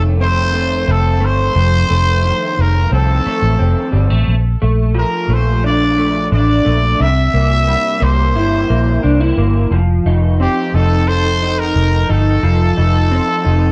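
Nostalgic and laid-back, this indie and bedroom pop excerpt sets a raspy, growling trumpet melody over a slightly broken-up electric guitar through a small old amp, soaked in analog chorus, vibrato effect and plate reverb, and a dark, foam-muted fingered electric bass, while the trumpet itself carries lush chorus and analog delay, all moving from F7 through Bbmaj7 and C7 back to F7 under the sound of cassette tape and light reverb.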